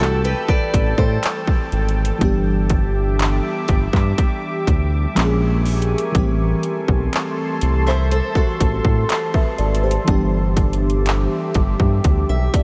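Contemporary R&B excerpt at a slow 61 BPM in E minor, sensual and moody, where a smooth, mellow synth bass and an up-front trap kit with a hard-clipped kick, metallic hats and handclaps sit beneath a lush, detuned FM electric piano with chorus and tremolo, a deep sawtooth ambient pad with sidechain pumping, and a fingerpicked steel-string acoustic guitar whose arpeggios carry finger squeak and tape echo, all soaked in huge dreamy reverb over Am7, Em7/G and A#m7 chords before an electric piano fill at 12.0 seconds.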